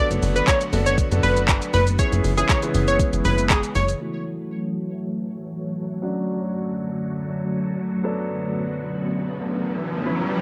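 A punchy, detuned unison lead carries a catchy melody with tape echo and sidechain pumping over a funky sawtooth bass and a soft-kicked, dark-hatted R&B drum kit with handclaps and shaker in this driving, bittersweet dance-pop excerpt at 119 BPM in F# minor, while a lush, chorused string machine and a deep-toned concert grand hold the harmony until the lead, bass and drums drop out by 4.0 seconds, leaving piano and strings under a filter sweep before a riser enters at 8.9 seconds.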